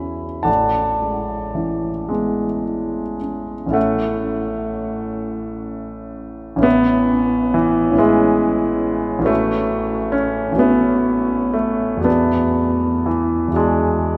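Classical impressionist solo piano, serene and luminous, unfolds in a slow, flowing 6/8 with a free, rubato feel across this 14.2-second excerpt from a longer piece. A concert grand carries everything alone, sitting up front with an intimate, polished tone, deep bass reaching down to A1 and audible action noise that brings the listener close to the instrument. Its long sustain lets rich harmonies bloom and linger, moving from Amaj9 through A6, C#m7/A and A69 before settling on an unresolved E9sus4 at 12.1 seconds. A new passage begins at 3.8 seconds, extending the gentle drift of the opening. The performance sits in a church or concert hall, wrapped in a wet cathedral reverb whose long tail gives the sound a glowing, spacious halo.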